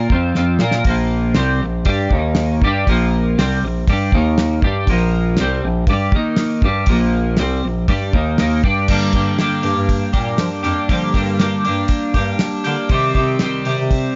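Mysterious and dark, this psychedelic rock passage, cut from a longer piece, moves in a straight 4/4 feel. A clean, picked twelve-string electric guitar carries the riff up front, its compressed tone doubled and colored by flanger, ranging from G2 to Bb4. Underneath, a bass clarinet supplies the bass line with a smooth top, light vibrato and a jazz-inflected touch. A cloth-damped drum kit gives a thuddy, dry pulse with a fat snare, tight kick, hi-hat and dark crash cymbal, and it opens with a short fill at 0.4 seconds. The harmony first cycles between power-chord shapes before settling onto G minor at 8.9 seconds and moving to C minor near the close, all heard in a small room with light reverb and a rolled-off top end.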